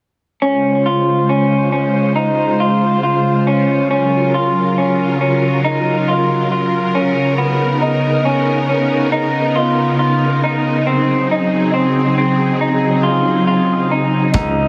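Ethereal and dreamy, this dream pop passage in Db major drifts along at 69 BPM in a straight 4/4, cut from a longer piece. A vintage string machine voiced as violas holds sustained chords with a sawtooth edge, slow attack and long release, its bright tone thickened by ensemble chorus, while an electric guitar through a small old amp plays dark, slightly broken-up fingered arpeggios with a lo-fi, compressed character, subtle chorus and delay. Both parts run from 0.4 s, moving through Dbmaj7, Gbmaj7/Db, Cbmaj9/Db and Ab7/Db, each chord resting on Db. Only at 14.3 s do a concert grand piano, warm with deep bass on a low Db, and a loose indie drum kit with hi-hat and a punchy kick in a pumping studio room briefly appear before the cut. A moderate, lush hall reverb surrounds the up-front parts, and the whole mix carries a heavily compressed radio sound.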